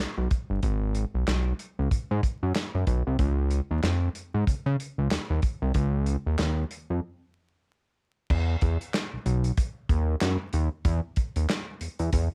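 A fat, detuned sawtooth bass anchors this funky, cool funk excerpt at 94 BPM in 4/4. Its thick, saturated, evolving tone, filter pluck and fast attack with sustained notes sit up front, ranging from G1 to C#3. An acoustic soul kit in a small room joins at 0.3 seconds with a tight kick, medium-tuned snare, hi-hat, handclaps and crash cymbal, mid-forward and swung at 60% on the 16ths; a break arrives at 7.0 seconds before a new section begins at 8.3 seconds. The production is dark and warm with light reverb, a rolled-off top on the drums and a layer of vinyl crackle, tuned to A4 = 441 Hz.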